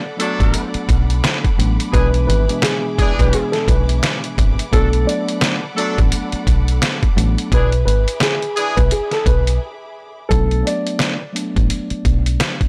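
A swung boom-bap groove at 86 BPM in 4/4 drives this tough, dark hip-hop piece in B dorian. It is built on a compressed, pitched-down sampler-style kit with a thumpy kick and medium-tuned snare sitting up front, beside a round, punchy fingered electric bass with a foam-muted dub tone. Over it, a woody, slightly detuned upright piano carries the melody with audible action noise and an intimate, vintage character, while a mellow tine electric piano with a cassette-tape colour fills out the accompaniment. A pop-style horn section adds clear stabs with light vibrato and analog delay until 8.8 seconds, and a distant, lush bowed string section holds sustained chords in the background. The harmony alternates between Bm7 and E7, and after a short break the strings stop at 10.3 seconds as the music moves into a new section on Bm7, all captured with a dry, gritty hardware sound in a small room.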